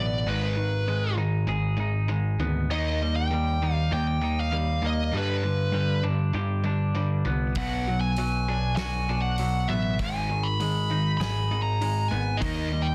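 A dark, angsty stretch of quiet-loud alternative rock opens with a high-gain lead guitar singing an up-front melody through distortion and slapback echo, over twangy, bright clean arpeggios, a sludgy double-tracked overdriven riff and a growly, punchy bass in a half-time feel. The harmony moves through G#m, Eb, G and Bm, and at 7.5 seconds a loose indie drum kit joins with a distant, roomy sound, a punchy kick, medium-tuned snare and hi-hat. Light reverb and a dense, heavily limited modern master give the fragment a thick, crowded weight.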